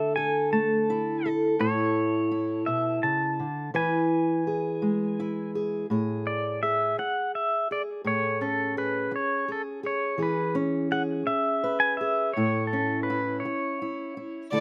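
In a slow 6/8 at 56 BPM, this nostalgic acoustic folk passage in A major rests on a dark, fingerpicked steel-string guitar that moves through chords such as Dsus2, Amaj7 and E6. A bright, twangy pedal steel guitar, clean and compressed with volume swells and slide, carries a solo across both sections from the start to 14.5 s. At 14.5 s a rich, nasal bowed fiddle with light vibrato sounds a single note up front under light reverb, as the cut ends.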